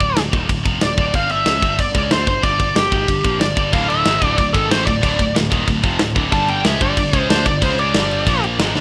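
Epic and aggressive, this heavy metal passage from a longer piece drives in a straight 4/4 over chords built around Dm and G5, with brief turns to C#5 and Bb5 near the close. Up front, a distorted high-gain lead guitar with digital delay carries the melody over a picked riff guitar sitting in the background, a growly foam-muted electric bass, and a tight acoustic drum kit in a big room with bright cymbals, a medium-tuned snare and a firm kick. At 3.7 s a second distorted riff guitar joins, and the whole piece carries light reverb in a rough home demo mix.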